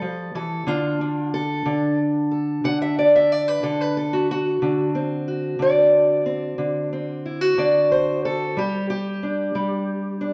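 Soulful and gritty, this short excerpt of acoustic country blues moves at a slow 12/8 pace, carried by a lone fingerpicked steel-string guitar from start to finish. The guitar has a dark, boxy parlour character and sits up front, spanning D3 to F#5 as it moves from G5 to a long stretch on D7 before returning to G5 at 8.6 seconds. A moderate, stage-like reverb and a dark, warm production give the playing a sense of space.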